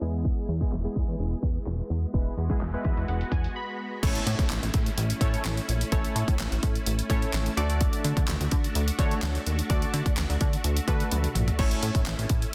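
A filter sweep opens this summery, carefree dance-pop excerpt at 127 BPM in A major, where punchy, up-front electronic drums with a fat snare drive a glossy, saturated synth bass, round, detuned analog keys and a silky string machine, those three pumping to the sidechain, with a synth keys fill and a brief break leading into 4.0 s, a very quiet downlifter entering at 4.1 s and a drum fill at 11.1 s, set in digital ambience within a dense, heavily limited modern master.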